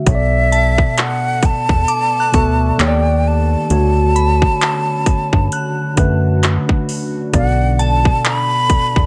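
Contemporary R&B in B minor at 66 BPM with a swung, sensual late-night feel, this excerpt sets a breathy concert flute melody with vibrato over a mellow, phased tine electric piano, a rubbery, bouncy square bass and an overdriven trap kit of hard-clipped kick, metallic hats and handclaps roughened by 12-bit sampler grit, while a glassy synth bell with chorus and tape echo enters at 0.5 seconds and a deep, moody ambient pad joins in the background at 1.3 seconds, moving through Bm7, D#maj7 and Dmaj7 in a dry, close-up mix.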